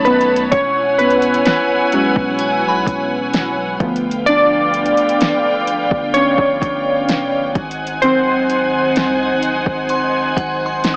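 A slow, straight 4/4 pulse at 64 BPM comes from a smooth, electronic R&B drum kit with a soft kick, fat snare and metallic hats, overdriven and up front, under a deep, mellow 808-style sine bass that holds long, decaying notes in this tender contemporary R&B excerpt. Round, detuned analog keys with chorus and an evolving filter sweep carry the solo over B9, E69, G7 and G#7 chords, cushioned by a lush, intimate bowed string section with vibrato and a sidechain pumping effect. A glassy, crystalline FM bell with chorus, phaser and tape echo sparkles in at 2.4 seconds and again at 9.9 seconds, all set in a lush hall reverb with an AM radio tone.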